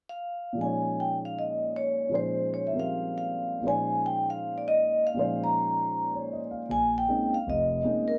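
Jazz at a swinging 157 BPM in 4/4, this short cut from a longer piece sits in Bb dorian with a cool, intense mood. A vibraphone struck with medium hard mallets carries the melody from 0.1 seconds, its metallic, ringing tone shaded by a medium motor vibrato and a vintage, band-limited character, set up front with plate reverb. A dark concert grand piano enters at 0.5 seconds as accompaniment, mellow with deep bass and long sustain, ranging from F1 to F5. The harmony settles on a Bbm11 chord from 0.6 seconds, and a second section begins at 6.7 seconds before the piece ends at 8.2 seconds. A moderate club reverb places the pair in a shared room.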